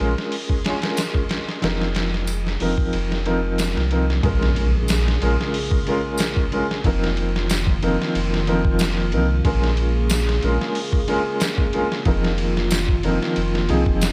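A brooding, cinematic trip hop piece, heard in a short cut from a longer work, moves with a lightly swung 16th-note feel over a slow alternation of Bbm7 and F7sus4. A felt-muted upright piano sits up front, soft and intimate with audible action noise, its chords coloured by tremolo and tape echo, while a round, deep sine sub bass anchors the low end from the start. A reversed, granular texture glimmers very quietly in the first 4.2 seconds before giving way to a warbling, nostalgic tape-like pad with chorus and its own reverb, dark and vintage in the background. The sampler-style drum kit enters at 0.2 seconds, compressed, pitched down and muffled, with a thumpy kick, medium-tuned snare, hi-hat and ride, all carrying a small-room character, and a tambourine joins at 1.0 seconds. A faint electronic impact marks the pad's arrival at 4.2 seconds, and light reverb gives the mix a close, hazy space.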